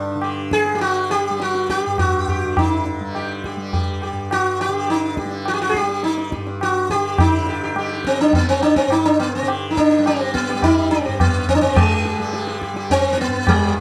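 A dark studio sound with moderate reverb frames this devotional, meditative Hindustani classical excerpt, in which an up-front, plectrum-plucked sitar carries the melody with buzzing, shimmering sympathetic strings over a bright, softly plucked tanpura drone and close, dry, low-tuned tabla with a short ring, the performance speeding up throughout and moving into a new section at 7.2 seconds.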